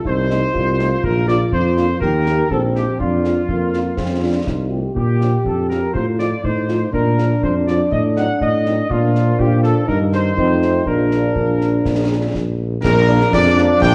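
A warm trumpet section carries the melody up front with light vibrato and a smooth top in this festive, proud military-style march for wind band, moving at 122 BPM in 2/4 in Bb major. A mellow tuba anchors the bass, while a roomy, distant euphonium sings a second line and a dark French horn section fills in accompaniment from the background, over concert bass drum, snare and clash cymbals with dark cymbal tone in a small-room sound. Cut from a longer piece, it ends as a bright, tight trombone section enters with sustained chords at 12.8 seconds, the whole steeped in wet large-studio reverb and the worn, warbling pitch drift of old cassette tape.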